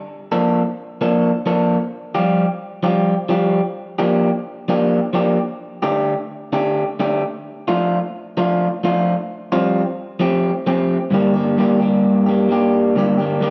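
A lone electric guitar through a small old amp, picked and compressed with a slightly broken-up edge and placed up front, carries this restless, cool rock fragment from 0.3 to 13.5 seconds, moving through open, suspended chords such as Bbmaj7, Fsus2 and Fadd9 before landing on Gm at 11.1 seconds, its sound ringing in the moderate reverb of a church or concert hall.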